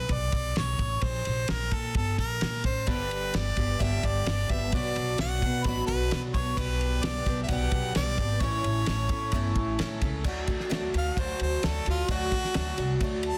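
A clear, up-front harmonica carries the melody through this short, nostalgic excerpt of folk rock and heartland rock, its pop-style lines touched with analog delay before it steps into a solo at 10.3 s as the music settles into D mixolydian. Underneath, a growly, woody upright bass played pizzicato and a damped 70s drum kit with a fat snare, tight kick and dark cymbals drive a straight 4/4 pulse at 130 BPM. A jangly, shimmering twelve-string acoustic guitar, picked and octave-doubled with the mellow tone of old strings, joins at 2.9 s to fill out the accompaniment. The chords move from Bm through G and A before landing on D. Light reverb gives the band a small-room ambience, while the master is dense and heavily limited.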